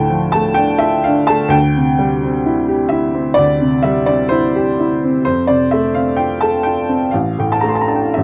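Unhurried rubato in four gives this brief cut from a longer romantic nocturne a wistful, mournful sway, as a lone upright piano, clear, woody, open and up front, ranges from deep bass to high treble across its 8.2 seconds inside a moderate studio reverb and a dark, warm production.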